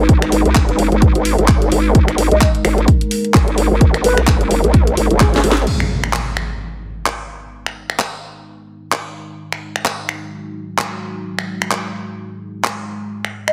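This bass house excerpt bounces along in 4/4 with a swung sixteenth-note feel, its bouncy, gritty mood driven by a punchy, tape-warm electronic kick up front and a layered house kit of cracking snare, hi-hat, handclaps, finger snaps and crash cymbal that sounds re-recorded in a small room. Underneath, a nasal, resonant wobble bass with a formant-filtered vowel sweep, saturated and compressed with chorus and sidechain pumping, carries the low end until 5.7 seconds. A deep, moody analog pad of detuned sawtooth and triangle tones with a sub octave holds sustained G# minor chords throughout, its slow attack and long release softened by chorus and sidechain pumping. From 2.3 seconds a breathy, mellow concert flute with vibrato and rolled-off highs sings an expressive line from the background through a digital delay, returning briefly at the very end. The kick drops out at 5.3 seconds during a drum fill, and an electronic impact hits at 5.7 seconds as a filter sweep moves across the pad, while the whole mix carries a heavily compressed, radio-like digital sheen.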